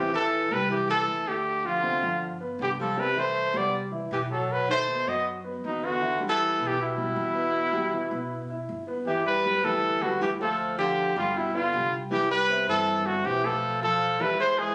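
A warm trumpet with vibrato, scooped notes and a smooth top sits up front in plate reverb, leading this sophisticated, fiery 158 BPM jazz excerpt in E minor that moves to G major at 9.1 s, while a mellow, distant baritone saxophone carries a subtone second line, an intimate grand piano with audible action noise and long sustain provides accompaniment, and a woody pizzicato upright bass holds the low end, all captured on a phone in a studio room with moderate reverb.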